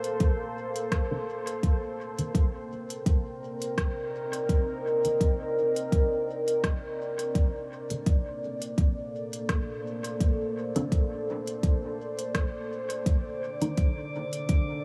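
Deep and spacious, this ambient dub fragment moves at 84 BPM in C dorian with a light 16th-note swing. An up-front pad of detuned, wave-folded sawtooth tones with ring modulation, chorus and reverb holds Bbmaj9 and Cm9 chords over a layered electronic kick and a tape-tinged electronic kit of crisp hi-hats and rim clicks sent through dub echo. A muted, filtered chord stab with phaser, analog chorus and dub echo carries a filter sweep throughout, while a calm, glassy texture of drifting overtones arrives at 13.5 seconds and a huge reverb soaks the mix in a dreamy haze.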